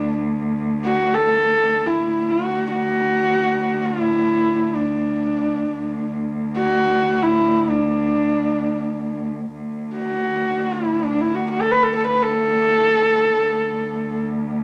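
From the first moment, a nasal, husky horsehead fiddle with an airy, boxy closeness carries a free-time Mongolian folk melody in D gong mode over a dark, smooth-topped cello drone on D2, both bowed up front with vibrato, soft attacks and gliding portamento in a short club reverb, giving this galloping yet vast fragment of a longer piece its intimate pull until the fiddle stops at 14.2 seconds and the cello sounds on to 14.6.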